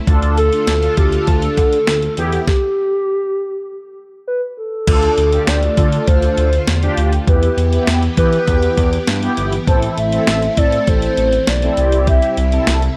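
This synth-pop piece at 100 BPM in 4/4 is melancholic yet driving, moving from D minor through E minor, A minor and C, with a stop between 2.5 and 4.9 seconds before the second section begins. A clean, tape-warm 12-bit drum machine with a thumpy kick, medium-tuned snare, hi-hat and crash cymbal and a smooth, up-front sawtooth bass set the pulse. Over them, a shimmering, warbling string machine holds slow-attack violin chords, dark, round synth brass adds phased and chorused accompaniment, and a hollow, woody clarinet-like lead carries the melody with vibrato, all in light digital reverb, in a passage cut from a longer piece.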